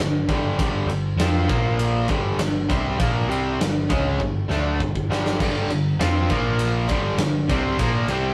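Hard rock excerpt at 100 BPM in a powerful, swaggering straight 4/4, where a crunchy overdriven guitar and a bright semi-hollow guitar drive a riff over G5 and Bb5 power chords with a growly, punchy picked bass, as a big, dark acoustic drum kit with an up-front punchy kick and ride and crash cymbals enters at 0.3 seconds, plays a fill from 4.2 to 5.4 seconds, and a double-tracked distorted guitar joins in the background at 5.4 seconds, all captured in a rough rehearsal-room sound with moderate reverb.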